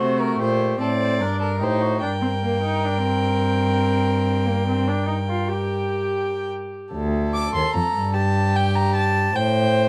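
In a straight 12/8 at 49 dotted-quarter beats per minute, this contemplative, serious baroque-style fugue in G minor for string quartet sets a period-style first violin with light vibrato carrying the melody up front, a close, airy-bowed second violin with a nasal edge on a narrow second line, a distant, rich viola with reedy gut-string colour in accompaniment until it drops out at 6.9 s, and a distant yet prominent cello holding the bass, all under light reverb in a dark, warm production as the harmony moves from D7 to Gm and closes on Am7 at 9.3 s in this short cut from a longer piece.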